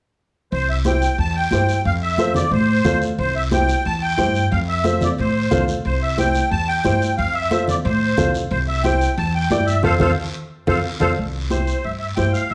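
At 0.5 s a shimmering, reedy musette accordion with plate reverb carries the melody over a thumpy, woody pizzicato upright bass, ringing high-tuned congas and a raspy guiro, launching a sunny, festive cumbia that alternates between C and F. A clear, slightly detuned upright piano adds accompaniment just after, and the whole ensemble sits back in a large studio room. A band accent lands at 9.8 s with a drum fill from 10.3 s, leading into a brief new section before this cut from a longer piece ends.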